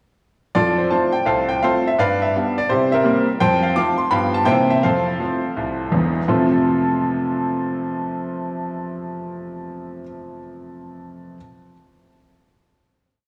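A bright, worn concert grand piano plays solo stride jazz with a swung, exuberant and playful feel, carrying a tune over chords and a stride bass that reaches deep into the low register. It sits up front with audible action noise and a tape echo while the mix is soaked in a dreamy church reverb, moving through a short opening passage before settling on a final chord at 6.3 seconds.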